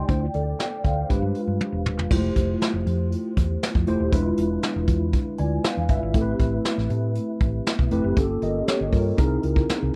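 Breezy and glossy, this short cut of polished 1980s jazz-funk pop moves at 119 BPM in a straight 4/4, with a mellow, clean tine electric piano out front through its built-in speakers with ensemble chorus, a dark, round hollow-body short-scale bass played with the fingers, and a roomy brushed drum kit with a tight kick, rolled-off top and a fill from 1.6 to 2.1 seconds that ushers in a new section over rich chords such as Fmaj9, E7b9 and Am9, all in a dry sound.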